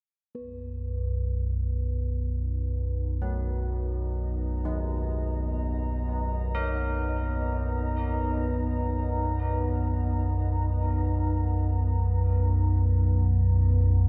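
Unsettling and dark, this free-time dark ambient drone excerpt in B major opens with a very quiet, pure quartz singing bowl at 0.3 seconds, joined by a rumbling, ominous low drone up front at 0.4 seconds, then a moody, detuned pad with chorus from 2.2 seconds and bright bronze carillon bells playing arpeggios through a diffuse delay from 3.2 seconds, all bathed in a cavernous cathedral reverb.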